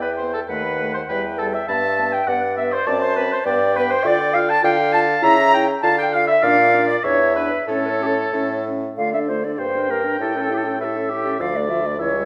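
Heard in the moderate reverb of a recital hall, this restless, urgent classical-period movement for wind quintet unfolds with a rubato feel in 2/4: a wooden, vibrato-tinged flute carries the melody over a distant oboe second line, a clear clarinet and mellow, vintage French horn supply accompaniment, and a punchy, up-front bassoon anchors the bass before the music turns to new material at 9.0 s.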